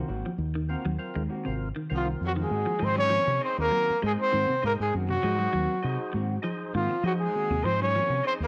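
A breathy, whispered trumpet carries the melody up front from 2.0 s, scooping into notes over a round, punchy fingered bass in this funky, driving afrobeat excerpt at 100 BPM in Ab mixolydian, where a clean picked guitar arpeggiates, a dark chorused guitar stabs in the background, a fat percussive tonewheel organ turns through a slow rotary speaker, and a breathy tenor saxophone and an airy, sul tasto cello join on a quiet second line at 1.9 s, all in light reverb.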